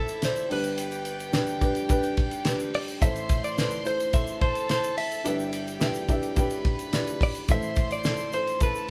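A clean, compressed electric guitar carries the melody in this short excerpt of earnest, bittersweet piano-driven pop in A minor at 107 BPM, while a floating, soft-attack violin section adds a second line. A woody upright piano sits up front with the accompaniment over chords moving from Am to G, back to Am, then to Em7/G and home to Am. A dry, damped 70s drum kit with a fat snare and tight kick keeps straight 4/4 time, and a grainy tube shaker sits in the background, all under light reverb with the band playing live in one room.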